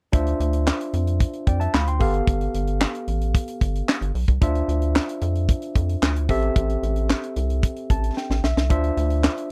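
This is a dry, close recording with little reverb, in a 1970s studio manner, and the short excerpt is cut from an early-eighties boogie funk piece at 112 BPM in a straight 4/4, in D dorian. A tight funk drum kit sits up front with a natural small-room sound, a high-tuned snare and a tight kick, and handclaps and hi-hat drive a danceable, funky groove. A rubbery square-wave bass, hollow and dark with a fast attack and a moving notch on its filter pluck, bounces between G1 and F2. A barky tine electric piano, clean and played through a combo amp, supplies the accompaniment over chords from Dm9 to G9, back to Dm9, then Am7, returning to Dm9 at 8.7 seconds. Near the end the electric piano adds a fill from 7.6 seconds, joined by a short drum fill at 8.2 seconds.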